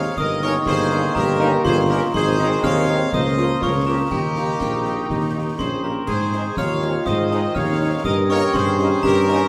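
Set in the wet, roomy reverb of a scoring stage, this short excerpt of a spirited, proud military-style march for wind band in 2/4 is anchored by a mellow tuba bass up front. A clear, distant trumpet section with light vibrato carries the melody, while a dark euphonium, soft-attack woodwinds and a sparkling, bell-like glockenspiel struck with hard plastic mallets play second lines. A very quiet French horn section and tight, warm trombone chords fill the middle, and from 0.2 s clash cymbals, concert bass drum and concert snare drum sit in the background with bright cymbals.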